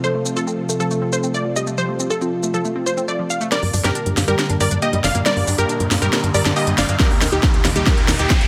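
A bright, detuned unison pluck carries the melody of this bittersweet, emotional uplifting trance excerpt at 138 BPM in G minor, its punchy sawtooth notes pumping with sidechain and trailing a dub echo. Beneath it, a lush unison pad holds thick, warbling, vintage chords with chorus, while a round analog pluck plays arpeggios in the background through cassette tape colour and tape echo, with a filter sweep opening it during the first few seconds. A dark, velvety synth lead with chorus, tremolo and delay sings a second line over the opening F chord, and at 3.5 seconds, as the harmony moves to G minor, a catchy plucky unison lead with phaser and tape echo takes over that role. A tight, driving sequencer bass with ring-modulated bite enters a moment later at 3.6 seconds, and the techno drum kit's cracking snare, smooth hats and shaker push a build-up and drum fill while a riser climbs in the background from 5.1 seconds. 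A heavy, up-front electronic kick drum lands at 7.0 seconds on an E-flat chord, all within a light reverb.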